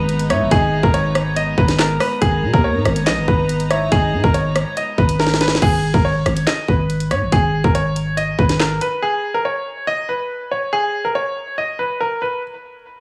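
The recording has a close, lightly reverberant studio sound, with a hard-hitting drum kit and a buzzing bass pushed to the front. This ominous, dark drill track moves with a half-time feel, led by a brilliant baby grand piano melody that carries tape echo and a worn, intimate character with audible action noise. Beneath it, a dark string section holds floating, bowed chords with a smooth top, while a round octave-layered synth lead sits in the background with chorus, tremolo, vibrato and tape echo before dropping out at 4.3 s. The electronic kit brings a hard-clipped kick, sharp snare, bright hi-hats, handclaps, rim clicks and crash cymbal, all coloured by vintage 12-bit sampler grit, alongside a growling 808-style bass with a fast attack. A drum fill at 5.2 s leads into the second section, where the strings have ended and the piano eventually plays alone after the drums stop at 8.9 s, in this cut from a longer piece.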